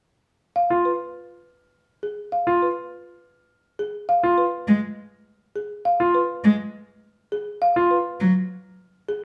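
Hypnotic and bright, this short excerpt from a longer piece is classical minimalist pattern music in 3/4 at 102 BPM with a straight feel. A folk marimba played with soft mallets carries the melody from 0.6 to 9.2 seconds, its hardwood bars giving a woody, rustic, mellow and round tone that sits dry and up front. A brilliant concert grand piano enters at 0.7 seconds with arpeggios, adding deep bass beneath its sparkle before it drops out at 8.0 seconds. A clear, focused cello, bowed by one player with vibrato, joins as accompaniment from 4.7 seconds. The harmony moves from an open, chordless start to a G#5 chord and then back, all set in a moderate large studio reverb that places the listener further back in the room.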